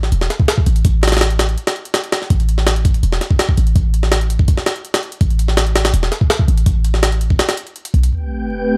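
Drum and bass with a raw, atmospheric jungle edge at 165 BPM in A minor, where a gritty, compressed, pitched-up sampler kit with a thumpy kick and high-tuned snare drives alongside a deep, boomy sine bass under vinyl crackle, the kick dropping out at 7.4 seconds before an impact at 8.1 seconds brings an electronic sub drop, followed by a dark, wind-like tuned noise texture with built-in reverb and then a breathy, warbling detuned pad on an Am9 chord with chorus.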